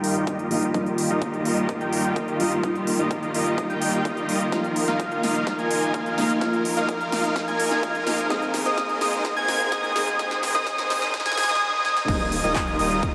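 Anthemic and euphoric, this festival progressive house passage, taken from a longer track, spends its first 12.1 seconds building toward a drop over a straight pulse and chords moving from Ebadd9 through Bbsus4 and Abadd9. A felt-muted upright piano sits in the background with a soft, intimate tone, dressed in lush chorus and delay, while a distant, focused symphonic string section holds bowed chords beneath a filter sweep. A huge, thick supersaw riff, heavily compressed, filter-swept and placed up front, shares the space with a bold, dark unison lead playing high arpeggios through delay, both pumping against the kick. The big-room drum kit brings an overdriven, punchy snare, crisp hats, handclaps and crash, with a long drum fill carrying the build, supported by a tape-warm electronic kick set back in the mix, and a very quiet electronic riser joins at 7.0 seconds. At the drop, a deep, saturated sub bass arrives on Eb1, and the whole mix floats in a dreamy, reverb-soaked ambience.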